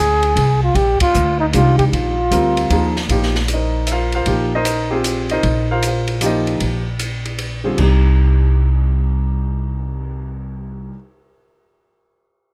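Modal jazz in a swung 3/4 at 154 BPM, searching and cool, this short excerpt opens with a breathy, whispered trumpet carrying the melody up front with vibrato and a soft attack, over woody pizzicato upright bass, joined at 0.2 seconds by an open drum kit with dark cymbals and a boomy kick. A band accent lands at 1.0 seconds, the warm grand piano enters as accompaniment at 1.5 seconds, and the trumpet drops out by 2.9 seconds, leaving piano, bass and drums to carry the Bb9sus4 harmony until it shifts to Cm at 7.8 seconds. Light reverb gives the intimate, close sound a touch of space.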